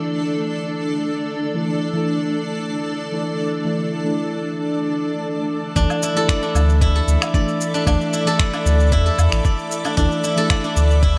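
A dreamy, reverb-soaked mix opens this short cut from a longer organic downtempo piece at 114 BPM. Muted, felt-like synth keys with chorus and a diffuse ambient delay sit over a cloudy, slowly evolving granular pad on a Dsus2 chord, both pumping with sidechain. At 5.8 seconds a silvery steel-string zither enters with ringing fingerpicked arpeggios, joined by a round, deep sub bass up front, a gritty overdriven thumpy kick, and overdriven shaker, woodblock and finger snaps, giving the warm, hypnotic groove its body.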